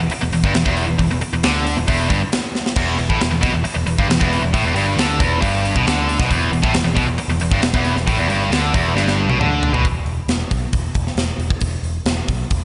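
A tight, double-tracked distorted guitar opens on an E5 power chord, driving a picked riff between E2 and D3 with a slapback echo on its bright, up-front tone. This is an energetic, powerful hard rock clip at 136 BPM in a straight 4/4, with an overdriven picked electric bass sitting underneath from E1 to D2, its sound growly and punchy. A tight metal drum kit joins at 0.1 s, with bright cymbals, a medium-tuned snare, a compact kick, hi-hat and toms, and it is placed up front in an airy, polished space. The drums throw in fills at 2.5 s and again leading into the change at 9.8 s, where the guitar stops and bass and drums carry a new section to the end. A lush hall reverb lends the whole mix a big arena sound, though the top end stays rounded, and the clip is cut from a longer piece.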